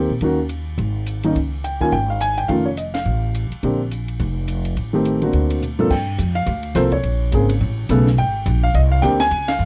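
A dry, close recording with a 1970s studio character opens this brief, playful jazz piano trio cut from a longer piece, swinging in a relaxed 4/4 at 211 BPM. The baby grand piano carries the melody up front, its natural tone and short sustain giving each phrase a crisp, intimate quality. The upright bass sits just as far forward, its pizzicato steel strings woody, growly and thumpy. A compact cocktail drum kit joins at 0.2 seconds and sits lower in the mix, its dark cymbals, high-tuned snare and punchy kick adding an acoustic lift. Harmony moves from Ebm7 through colourful turns like D7b13 and Bbm9 to Abmaj9#11. A drum fill at 5.6 seconds leads into the second section, and band accents at 2.9 and 9.5 seconds punctuate the groove.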